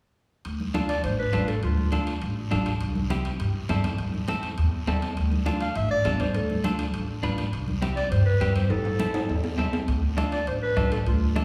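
This is a passionate, danceable cumbia in D dorian at 204 BPM, cut from a longer piece. An up-front upright bass, plucked pizzicato with a woody, growly tone, outlines the Dm, C and Am changes. Bright congas played with soft hands, ringing metal-shell timbales and a raspy guiro sitting in the background fill out the percussion. A clean, compressed electric guitar picks the accompaniment, while a clear, classical-style clarinet carries the solo melody up front, first in a brief phrase and then returning at 5.6 s. A drum fill at 8.7 s leads into a soft-beater bombo that enters in the background at 9.9 s. The room is a wet recital hall with a 1.8 s reverb, though the congas and bombo sound close and dry.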